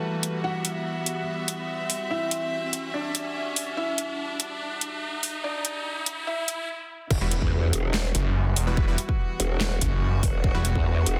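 A half-time pulse at 144 BPM in 4/4 drives this chaotic, heavy wobble dubstep clip in E minor, cut from a longer piece and opening on an Emadd9 chord. A felt-muted upright piano carries the melody from the start with a soft, intimate tone, audible action noise and tape echo, while a filter sweep runs across it and a clear, floating string section holds sustained chords that pump against the sidechain. A riser climbs through the build-up as the dubstep drum kit enters at 0.2 seconds with a huge snare, metallic hats, handclaps and crash, sitting up front. After a brief stop, the drop lands at 7.1 seconds with an electronic impact, a punchy layered kick, and a growling, wobbling bass thickened with chorus and overdrive. A snarling distorted saw bass with a moving notch joins it up front in the mix, and an airy supersaw stab with a filter pluck and tape echo flickers above. The dense, heavily limited master keeps the two basses in front, with light reverb around the whole.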